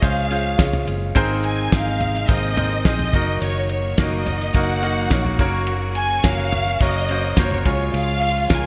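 A polished, 1980s-style digital production sets this short cut from a longer piece in a lush hall reverb. It is hopeful, anthemic piano-driven pop in a straight 4/4, carried by a violin section whose bowed, expressive vibrato sits up front yet sounds faintly distant. A brilliant concert grand with deep bass and short sustain supplies the accompaniment, while a foam-muted fingered electric bass adds a round, punchy low end. The damped 70s drum kit, with its tight kick, fat snare, dark ride cymbal and toms, sounds dry under gated reverb, and a jingly tambourine sits in the background. From 1.2 seconds a very quiet string section joins with smooth, sul tasto sustained chords as the harmony moves from Db through Abadd9, Ebm/Gb and Gb back to Db.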